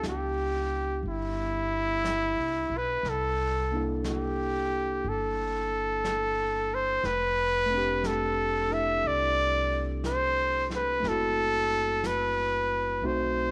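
Light reverb and studio ambience frame this intimate, tender jazz ballad at 60 BPM with a swung feel in C major, where a bright, close-miked trumpet sings the melody up front with light vibrato over a barky, lightly overdriven tine electric piano moving from Cmaj9 to F#m7b5, a woody, thumpy pizzicato upright bass, and a dark, smooth vintage brush kit of snare and hi-hat sitting in the background.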